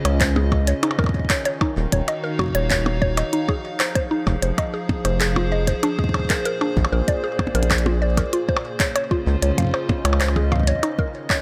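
IDM with an eerie, intricate mood, this 11.4-second excerpt from a longer piece moves at 96 BPM in a straight 4/4. A warbling, lo-fi pad holds sustained chords from Bb2 to F5, carrying chorus, phaser, built-in and shimmer reverb, 12-bit sampler grit and sidechain pumping, while a woody, mallet-like FM pluck spins arpeggios between D4 and F5 through chorus, delay, grit and shimmer reverb. Underneath, a round, dark analog bass sits up front from Eb1 to Db2 and stops at 10.7 seconds. A delayed glitchy drum kit with clicky hats, handclaps and percussion blips, joined by a deep electronic kick, both re-recorded in a large room, supplies the beat. The harmony moves through Dbmaj7, Ebm7, Fm7 and Bb7 before returning to Dbmaj7 and Ebm7, all wrapped in light reverb.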